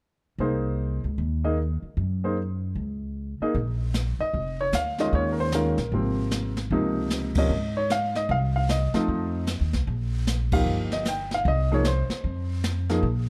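A clear, intimate grand piano carries the melody over a woody, thumpy pizzicato upright bass, both up front, opening this moody, late-night swinging jazz trio excerpt, with the piano's action noise audible. At 3.5 seconds a brushed drum kit joins with dark cymbals, a medium-tuned snare and a boomy kick, sitting further back in a softly reverberant room. The chords drift through suspended and ninth colours, and the band hits shared accents at 7.3 and 10.5 seconds within a dark-toned production.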